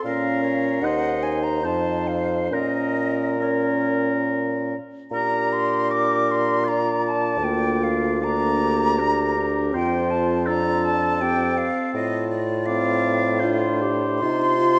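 In a flexible, rubato three-beat lilt, this slow, elegiac romantic movement for wind quintet unfolds as a fragment of a longer classical piece, turning to a new section at 5.1 s. An airy concert flute with vibrato, a soft attack and lifted highs carries the melancholic melody, while a distant, roomy oboe enters at 0.1 s with a second line, and a mellow French horn with a smooth top and a clarinet set in the background fill in the accompaniment. Underneath, a close-miked bassoon with light vibrato sits up front as a warm bass, the quintet blooming in a moderate scoring-stage reverb.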